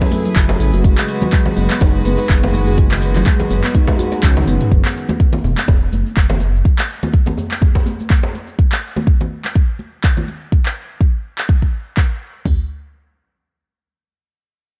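A deep house drum kit sits up front with a deep kick and smooth hats, driving this spiritual, earthy afro house excerpt at 124 BPM in 4/4 with a light swing on the sixteenths, while a second, quieter kit layers handclaps, hi-hat and toms beneath it. From the start, a handpan of nitrided steel rings out meditative fingertip arpeggios through a digital delay, and a rich chamber string section holds bowed chords with light vibrato over F#m11 and G#m7/F#, both pumping with sidechain until they stop near 4.7 seconds. Underneath, a dark detuned saw bass rumbles and beats with a saturated, sawtooth growl that also pumps, and a filter sweep shapes it just after a drum fill at 4.7 seconds as the harmony moves to Esus2. Hand percussion fills out the groove: a soft-handed djembe recorded in a live room, close and dry congas struck with hard hands, and a grainy, band-limited egg shaker with a vintage edge. 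The small room ambience gives the whole production a dark, warm character, and by 8.6 seconds the chords drop away, leaving the drums and percussion to carry the final stretch.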